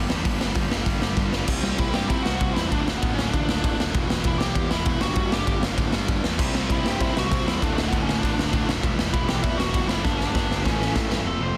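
A dense, heavily limited modern master with little reverb frames this rowdy, rebellious punk rock excerpt in D major, driving at 196 BPM in a straight 4/4. The raw garage drum kit sits up front, saturated and gritty with a punchy kick, a medium-tuned snare and a pumping stone-room sound, with fills at 1.2 seconds and again from 10.0 seconds. Beneath it, a wall of riffing guitars fills the background: a double-tracked, high-gain distorted guitar, an overdriven semi-hollow guitar with a hollow-body tone, and a very quiet, tight distorted guitar that drops out after the opening and returns at 6.4 seconds. A growly fuzz bass, picked and overdriven, anchors the low end. From 1.8 seconds a biting lead guitar carries the melody, overdriven and picked with a touch of tape echo, over a chord cycle that moves through C, D, E minor and G before landing on A.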